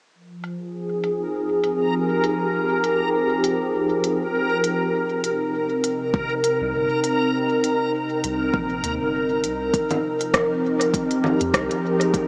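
An up-front, organ-like pad with ensemble chorus holds calm, evolving Fm11 and Cm7 chords through this meditative ambient dub excerpt at 100 BPM, joined at 1.8 seconds by a reversed, swelling granular texture on Bb4, over an organic electronic kit of crisp, filtered hats, congas and rim clicks with dub echo, while a deep layered kick arrives at 6.1 seconds and a round, mellow sub bass at 6.6 seconds, all set in a huge ambient reverb with a small-speaker character.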